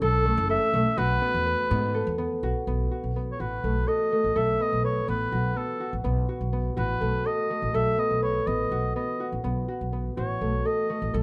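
Playful and hopeful, this brief excerpt of contemporary chamber music moves in an uneven 7/8 meter with a straight feel. A solo oboe carries the melody from the start to 11.1 seconds, its classical tone smooth on top and touched with light vibrato. Beneath it, a concert harp plays thumb-plucked, ringing arpeggios, while a pizzicato upright bass with steel strings supplies a woody, growly bass line, both sounding through to 11.2 seconds. All three instruments sit up front, caught by close, detailed microphones in light reverb. The harmony moves from A to B7sus4 at 1.0 seconds and settles on B7 at 2.7 seconds, where a new section begins and runs to the end of this portion cut from a longer piece.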